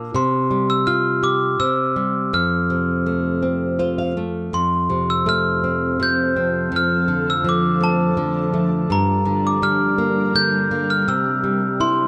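A tender, innocent children's lullaby in F major at 83 BPM in 3/4, cut from a longer piece, opens with a bright, boxy, fingerpicked flamenco guitar carrying the accompaniment with audible finger squeak and a nylon-string fill at 3.4 seconds, while an up-front, bell-like glockenspiel struck with hard plastic mallets rings out the melody through plate reverb, and from 5.5 seconds a cloudy, blurred granular pad with slow attack and long release sustains chords softly in the background of a small, moderately reverberant room.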